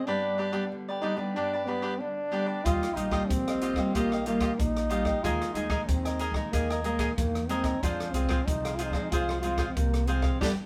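This samba and choro piece has a bittersweet yet lively mood, with a punchy, close-miked trombone taking a forceful jazz-style solo full of scooped notes over a crisp, picked cavaquinho and a fingerpicked classical nylon-string guitar whose fresh strings let an occasional finger squeak through. At 2.7 seconds a woody, thumpy upright bass with gut strings joins a natural small-room jazz kit, with its boomy kick, medium-tuned snare, hi-hat and rim clicks sitting up front. The band plays live together in one room under moderate reverb, and this short section cut from a longer piece closes on a band accent at 10.4 seconds.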